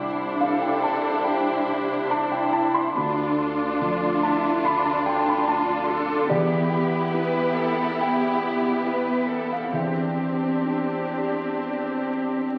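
Vinyl crackle from a very old 78 rpm record sits over a wet scoring-stage reverb, giving this cinematic film-score fragment a worn, faraway sheen. The mood is sorrowful and bittersweet, moving in a rubato 4/4 at roughly 66-74 BPM and tuned to A4 = 444 Hz, through Cadd9, Dm, Em7 and Cadd9/E. Up front, a felt-muted upright piano supplies soft, dark, intimate accompaniment, while a close viola section adds lush, smooth support. The melody floats in the background from a clear violin section with even vibrato, joined by a rich, focused second violin line. Beneath them, a bowed cello section and a double bass section set in the background form a full, sonorous foundation, and every part sounds from 0.0 to 12.6 seconds.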